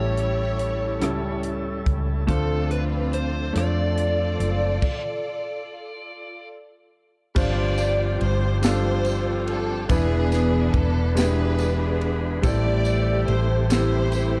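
A slow, straight 6/8 gospel feel carries this uplifting, reverent passage, cut from a longer piece. The crisp fusion drum kit plays in an airy studio room, with dark cymbals, a medium-tuned snare and a punchy kick. The round, hollow-body electric bass sits up front beneath a clear concert grand piano with deep bass and long sustain. A thick tonewheel organ holds sustained chords in the background, lightly overdriven through a slow rotary speaker. The melody belongs to a lush, bowed string section with a smooth top and slapback echo, joined by a gritty overdriven slide guitar, also with slapback, until 6.5 seconds; a stop begins at 4.8 seconds, and at 7.4 seconds a jingly, distant tambourine enters as the harmony moves through suspended and dominant chords to a minor close, all wrapped in a dark, warm small-room reverb.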